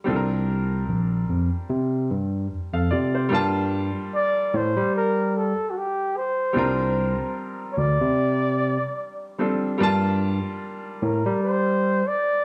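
A clear baby grand piano opens this sultry, late-night neo-soul passage, cut from a longer piece, with a barky tine electric piano joining almost at once to carry the bass line, its tone lightly overdriven through a combo amp. The groove sits at 74 BPM in 4/4 with a gentle swing on the sixteenths, in G minor and tuned slightly below standard pitch, as the harmony alternates between C9sus4 and Gm9. At 4.1 seconds a breathy flugelhorn takes the melody as a solo, dark and whispered with a soft attack, smooth top and jazz-style vibrato, and a slapback echo trails its phrases. The piano's short, natural sustain keeps the accompaniment uncluttered, and all three parts sit up front in an intimate small-room ambience with light reverb. The music runs on to 12.4 seconds, with the grand piano and flugelhorn sounding to the end.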